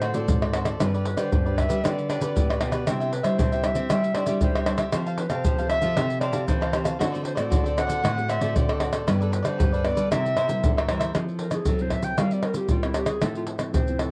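A warm, classical-style clarinet carries the melody in this sunny, playful samba and choro passage in C major, moving at 116 BPM in a straight 4/4. Beneath it, a crisp, picked cavaquinho and a fingerpicked nylon-string guitar, whose finger squeaks are audible, supply the accompaniment, both with a cassette-tape color shared by the clarinet. A second nylon-string guitar, dark and thumb-plucked, holds the bass line in the background. Up front, pandeiro, tamborim, maracas and a tight surdo are played with soft hands, in a small, moderately reverberant room that gives the whole a homespun cassette feel. The harmony moves from D7 and G through Cadd9 and Fadd9. At 11.1 seconds the cavaquinho stops and the clarinet takes a solo over Fmaj7 and C7sus4/G until the fragment, cut from a longer piece, ends at 14.1 seconds.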